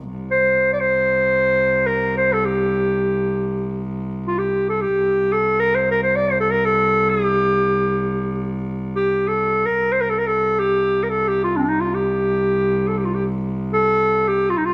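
Flowing in free time, this melancholic, soulful makam ensemble passage opens with a bowed cello drone that sounds rich, nasal and slightly boxy, with vibrato, portamento and a soft attack. From 0.3 s a warm clarinet takes the solo melody up front in a classical style, its tone distant and roomy. Both parts sit in a moderate recital hall reverb captured by close, detailed microphones, in a passage cut from a longer piece.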